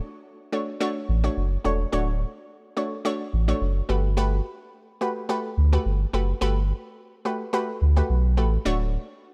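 A lightly swung sixteenth-note groove in 4/4 carries this breezy, joyful afrobeats passage, cut from a longer piece. An analog pluck opens at 0.0 seconds as the accompaniment, its detuned sawtooth and square-wave tone warm and round at the front, with a quick attack, short decay, a noise layer, a filter sweep and a moving notch, all thickened by chorus. At 1.1 seconds a warm sub bass enters underneath, a deep, sustained sine tone with a fast attack that sits up front and fills the low end. The harmony moves from Dmaj7 to Gmaj9 and settles back on Dmaj7 near the close, giving the short stretch an airy, open lift. A digital ambience surrounds the parts, and the passage reads as one continuous section lasting just over nine seconds.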